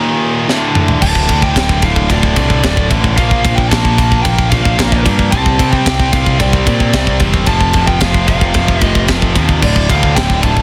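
A dense, heavily limited modern metal mix with studio reverb carries this dark, epic heavy metal cut in D phrygian at 112 BPM, where two bright, picked distorted guitars, one scooped and high-gain, churn a riff from the start, a tight metal drum kit with a high-tuned snare sits up front and opens with a fill at 0.5 seconds, and at 1.0 seconds a growling overdriven bass and a smooth, dark lead guitar with digital delay join for a high melody over chords moving from D5 through Bb5, C5 and F5.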